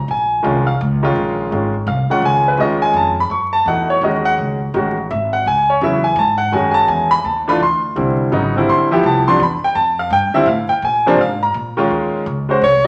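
Intense and spiritual, this modal jazz excerpt swings in 3/4 at 168 BPM, with a clear, polished baby grand piano laying out suspended and minor-eleventh chords up front over a woody, growly pizzicato upright bass, and at 12.6 seconds a clear, subtone, close-miked soprano saxophone with light vibrato scoops in on a single note, all set in a large studio reverb with a bed of vinyl crackle.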